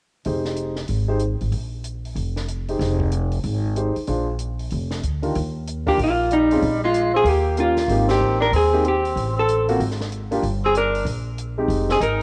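Warm and swinging, this small-group jazz fragment opens with a compact cocktail kit of dark cymbals and a high-tuned snare, an intimate grand piano whose action noise can be heard, and a woody, thumpy upright bass up front, before a clean hollow-body electric guitar takes the melody at 5.9 seconds over a raspy, growling tenor saxophone second line, with the band hitting an accent at 8.0 seconds, all in a small home room whose drums, piano, guitar and saxophone carry the hazy grain of cassette tape.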